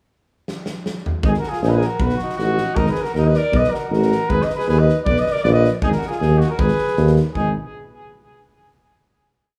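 A big-room acoustic drum fill with boomy kick and fat snare opens this fiery, virtuosic Balkan brass band piece at 0.5 seconds, in 2/4 at 157 BPM, before a smooth-topped tuba with light vibrato enters at 1.2 seconds playing root-and-fifth bass on the main beats, joined by a distant, roomy trumpet carrying a motif-based melody in sentence phrases through plate reverb and tape echo and a bright alto saxophone shadowing it mostly in thirds, the rough home demo mix with its small room ambience closing on a final chord at 7.4 seconds.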